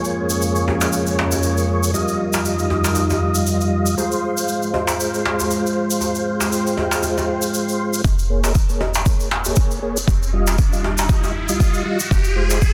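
Lightly overdriven tonewheel organ stabs sit up front with key click, chorus vibrato and a slow rotary spin, pumping over a deep, moody detuned analog pad in this spiritual afro house passage at 118 BPM, cut from a longer piece and moving through Bbm7/F, Ebadd9/F and Fm. A grainy, distant egg shaker opens the groove, and a medium-tuned djembe with metal rattles joins at 0.7 seconds. At 8.0 seconds a build-up arrives with a deep electronic kick, barely audible electronic toms in a fill and a round, woody FM bass, while an electronic riser enters at 9.7 seconds, all set in a plate reverb and a dense, heavily limited master.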